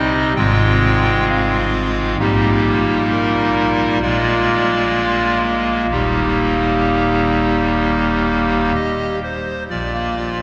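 Majestic and serene, this short classical excerpt is a slow, rubato chorale in Eb major at 64 BPM, played by a solo pipe organ on a hollow clarinet reed stop with baroque voicing, audible chiff and tremulant, spanning Eb1 to G5 as it moves through Fm/Ab, Eb/Bb, Bb7 and Eb before reaching Bb at 9.7 seconds, with the organ up front yet heard from deeper in a cathedral whose six-second reverb lingers long after each chord.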